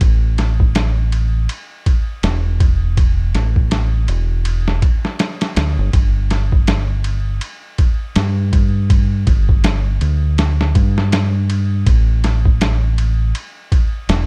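Dry and dark, this short cut from a longer trip hop piece sits close with little reverb, its production warm and shadowy. The mood is smoky and cinematic, moving at 81 BPM in 4/4 with a 59% swing on the sixteenths that gives the groove a lazy lean. A boom bap sampler-style drum kit plays from start to finish, its kick, snare and ride cymbal compressed, pitched down and gritty, with a thumpy kick, a medium-tuned snare and a tape-warm character that sounds re-recorded in a small room. Alongside it for the full 14.3 seconds, a deep dub fingered electric bass ranges between E1 and G2, dark, round and punchy, its sound both direct and amped. Both parts sit up front in the mix, and the music shifts into a new section at 5.9 seconds.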